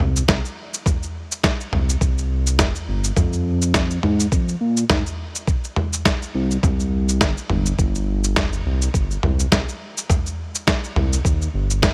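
A smooth, mellow synth bass with a sawtooth-and-square tone, vibrato and sidechain pumping opens this earthy, meditative organic downtempo excerpt alongside a dusty soul sampler-style drum kit of cabasa, toms and a medium-tuned snare, both sitting up front. At 0.3 seconds a compressed, thumpy electronic kick joins, and its gritty, tape-warm grain matches the kit's. The lightly swung groove sits in a dry, close-sounding space.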